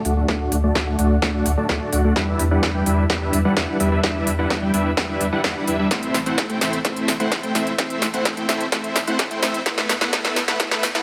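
Anthemic and powerful, this festival progressive house build-up is driven by a huge, detuned supersaw riff up front, pumping with sidechain compression and dub echo as a low-pass filter sweep runs across it and the chords move from D through Em7 and Am to E5. A deep, saturated sine sub bass pumps beneath, while a big-room electronic kit pushes a drum fill of punchy snare and crisp hats forward, with a layered kick sitting in the background. A lush hall reverb surrounds the mix.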